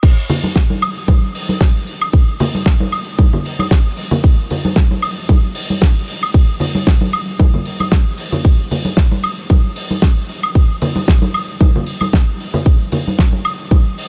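A punchy electronic kick sits up front from the first moment, alongside a damped 70s drum kit and a tube shaker with congas, in this groovy, feel-good nu-disco fragment cut from a longer piece. The kick is layered and produced, with a tape-warm character from being re-recorded in a small room. The acoustic kit sounds dry and rolled-off at the top, with a fat snare, dark crash and hi-hat, and a woodblock. The shaker and congas ring out with a small-room acoustic quality, and the sixteenths carry a light swing in 4/4. The whole passage plays as a percussion-only drop under light reverb and studio ambience, with the kick stopping at 13.8 seconds and the kit running to 14.1 seconds.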